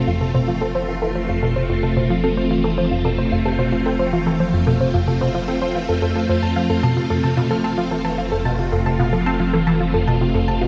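A swirling, vintage string machine holds sustained chords through ensemble chorus and phaser, while a soft, nasal pluck spins arpeggios with chorus and delay and a deep, wave-folded analog bass sits on a low F beneath. At 0.1 s a juicy, squelchy blip pluck takes up a resonant riff, the most prominent part, treated with phaser, cassette tape and delay. This cosmic, expansive fragment of ambient, sequencer-driven space music in a straight 4/4 is bathed in a wet concert hall reverb.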